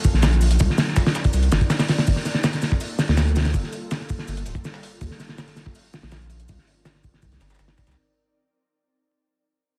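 A frenetic, atmospheric drum and bass excerpt in a jungle vein opens at once on an ethereal, airy pad holding sustained chords, its detuned unison layers softened by ensemble chorus and built-in reverb. Two drum kits drive the straight 163 BPM groove together: a cloth-damped, thuddy kit sits up front with a fat snare, tight kick and hi-hat, muffled and lo-fi with a rolled-off top, while a sampler-style breakbeat kit adds a pitched-up, compressed layer of hi-hat, shaker and medium-tuned snare, each thinned by a high-pass filter. From 0.1 seconds a saturated sine sub bass anchors the low end, deep and thick with a fast attack. The harmony moves through Ebm9, Cm9 and Gm9 before returning to Ebm9 and Cm9, all wrapped in small room ambience and vinyl crackle. The whole passage fades out across its eight seconds, cut from a longer piece.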